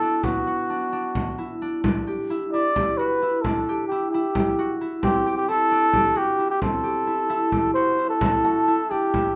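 The rhythm moves in a straight 7/8 at 263 BPM counted in eighths, giving this contemporary chamber piece an urgent, hypnotic pull in this short cut from a longer work. A breathy flugelhorn carries the solo melody up front, mellow and jazz-inflected with a light vibrato, ranging from F#4 to D5. Beneath it, a concert harp rings out bright, thumb-plucked arpeggios between B3 and G4, while a deep frame drum played with soft hands sits distant in a large room, entering at 0.2 seconds. The harmony passes from Bm through Em7 and D7sus4 before shifting to C69 as a new section opens at 8.2 seconds. There, a kalimba adds a brief, woody, hollow-box texture on A5 in the background from 8.4 seconds, airy and fingertip-plucked, all within moderate studio ambience.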